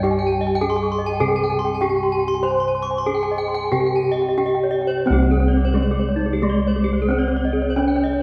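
A bronze metallophone carries the melody up front, struck with a wooden mallet and heard with a vintage, band-limited tone, joined at once by a mid-forward metallophone playing arpeggios and by round, bright, close-miked bossed gongs in the bass, while at 0.2 s a boxy, horn-mallet metallophone adds further arpeggios, the paired tuning of the metallophones producing shimmering beats in this brilliant, hypnotic Balinese gamelan excerpt in C pelog, which moves in straight 4/4 at 88-104 BPM within a long church reverb.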